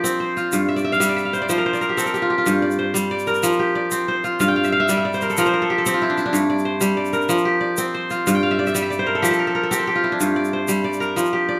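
Close, detailed microphones capture a bright, ringing kora up front in a moderate recital hall, its crisp fingerpicked arpeggios spanning G2 to G5 in this hypnotic, flowing West African excerpt at 124 BPM in 12/8, G dorian. A grainy, dry tube shaker sits low beneath it from 0.1 to 11.3 seconds, while the kora adds fills around 0.7, 4.4 and 8.3 seconds. The harmony rocks between F5 and G minor chords, reaching Gm13 and a Dm11/G colour, as the music moves from a brief opening section into a longer second one at 2.5 seconds.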